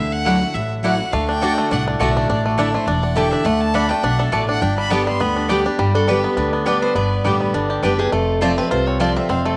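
A clear, lightly vibratoed fiddle solo opens this joyful, virtuosic bluegrass cut at a brisk 206 BPM in swung 4/4 and G major, over picked steel-string acoustic guitar accompaniment and a thumpy, woody pizzicato upright bass, with background mandolin stabs from 0.2 seconds and a twangy, percussive fingerpicked banjo carrying the up-front melody from 1.1 seconds, until a fresh-stringed dreadnought guitar takes up a second melody at 5.8 seconds, all in a light studio reverb.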